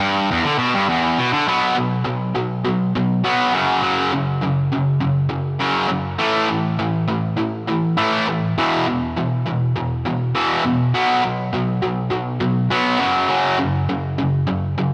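A bright, overdriven electric guitar plays alone up front, picked and double-tracked, carrying a driving, sunny rock excerpt at 102 BPM in a straight 4/4. Its power chords move from E5 through B5, F#5 and A5 before circling back, with the shift into a new section arriving at 1.5 seconds. A moderate plate reverb with a long tail gives the guitar a spacious sheen through to the cut at 14.9 seconds.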